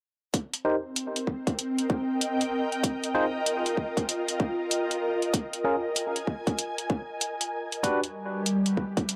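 Funky and gritty, this glitch hop excerpt in C minor moves at 96 BPM with a swung 16th feel, pairing a tight electronic kick and metallic hi-hats, both re-recorded in a small room, with a bright, barky, lightly overdriven tine electric piano playing stabs from 0.6 s through sampler grit, dub echo and a filter sweep, while an ethereal, detuned pad with ensemble chorus and sidechain pumping enters at 0.9 s over chords moving from Cm7 through F7(no3) and Bb7(no3) to G, all in an echo-heavy mix with spring reverb and a barely audible swell at 9.1 s.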